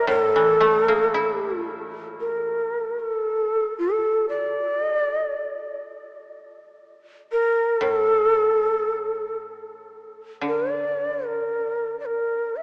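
A cavernous, cathedral-like reverb surrounds this short excerpt of calm, austere Japanese traditional music, heard through a small-speaker sound. An up-front shakuhachi carries the melody throughout. Its end-blown bamboo tone is breathy and mellow, with vibrato, a crisp, chiffy attack and rolled-off highs. Beneath it, a quieter acoustic koto, played with fingerpicks, adds a dry, woody accompaniment that drops out at 3.3 seconds and returns at 7.8 seconds. The pulse is free and rubato over a loose two-beat metre, and the tuning sits slightly below standard pitch.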